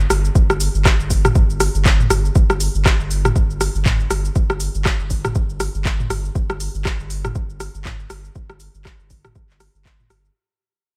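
A deep, overdriven electronic kick, layered and re-recorded in a small room with studio reverb, drives this earthy afro house excerpt at 120 BPM in 4/4 with a 16th-note swing, entering at 0.4 s into a drop that begins at the very start. Up front, an electronic afro-pop kit with studio reverb fills in handclaps, smooth hi-hats, rim clicks, shaker and toms with a tape-warm sheen, while a round, dark analog bass reaching down to G1, with a fast attack and sustained tone, pumps through sidechain. A digital ambience hangs around the groove as the whole passage fades out from 2.4 s to the end.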